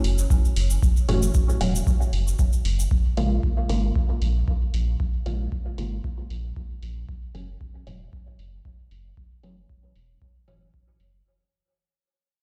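A deep, hazy dub techno passage cut from a longer piece, heard as if played on a big sound system in a bare room with stone room reverb, and fading out across its full length. At 115 BPM in 4/4 with a light 16th-note swing, an up-front electronic kick drum anchors the groove beneath a round, nasal analog bass whose sidechain pumping gives it a breathing motion. A layered electronic hi-hat sits low in the mix, darkened by a low-pass filter and re-recorded in a small room, while a grainy, bright cabasa appears only briefly between 0.2 and 2.9 seconds. From 1.1 seconds, a muted, detuned sawtooth chord stab with a filter pluck and moving notch drifts through phaser, dub echo and its own sidechain pumping. The harmony moves from Gb7(no3) to Bbm7 at 2.9 seconds and Gbm7 at 7.1 seconds.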